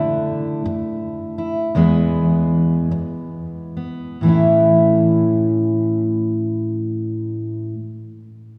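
A lilting 6/8 pulse eases and slows through the opening 4.2 seconds before settling as the harmony moves from Dsus2 to E and resolves onto A. This peaceful, hopeful folk excerpt features a single fingerpicked steel-string acoustic guitar, dark and full-bodied with a dreadnought's depth, sitting up front and ringing until 7.8 seconds. The guitar is bathed in a long, wet church reverb that lets each note bloom through the hall.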